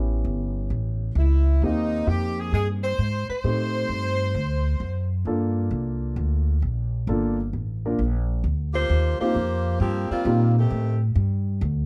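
Dramatic and brassy, this swinging big band jazz passage, cut from a longer piece, rests on a woody pizzicato upright bass up front from the start while an intimate grand piano with audible action noise accompanies, and a tight saxophone section carries the vibrato-laden melody from 1.2 seconds before returning at 8.7 seconds over shifting jazz chords in a dark, warm production with light reverb.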